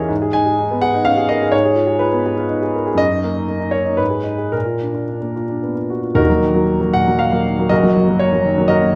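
Brooding and passionate, this brief excerpt from a romantic character piece for solo piano unfolds in E-flat minor, in 3/4 time at roughly 107-127 BPM, with a freely breathing rubato feel. A clear grand piano carries everything alone from 0.0 to 9.0 seconds, ranging from a deep Eb1 up to Ab5, its sound intimate and natural, placed up front, with long sustain and audible action noise. The opening passage leans on A-flat minor, moving through a diminished colour over an A-flat bass and an E-flat minor chord over G-flat before reaching a B-flat chord. At 6.2 seconds a new section settles onto E-flat minor, later shifting to its first inversion over G-flat. A moderate recital hall reverb surrounds the instrument, giving the brief fragment a sense of an actual room.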